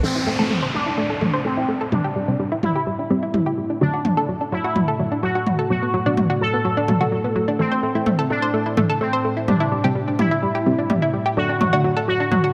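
Drenched in a huge ambient reverb with a long 4.2-second tail, this short cut from a longer melodic techno track feels driving and hypnotic at 127 BPM in a straight 4/4, set in A dorian. A bright, juicy resonant polysynth carries the melody up front, its detuned sawtooth tone treated with chorus, phaser and tape echo, while a round analog pluck with a sub octave spins arpeggios through chorus and digital delay. Deeper in the background, a muted, wave-folded dub chord stab sits under phaser and delay, and from 0.9 seconds a vintage analog drone holds a warbling, pulse-width-modulated A beneath everything it touches. Layered electronic toms drive the rhythm, with low-pass filtering on the toms, hats and snare, and filter sweeps run across the drums, arpeggios, polysynth and stabs for the whole passage. Downlifter and riser effects sound from the opening until 3.8 seconds and return at 11.4 seconds, as the harmony cycles through Am, Cadd9, D and Bm7.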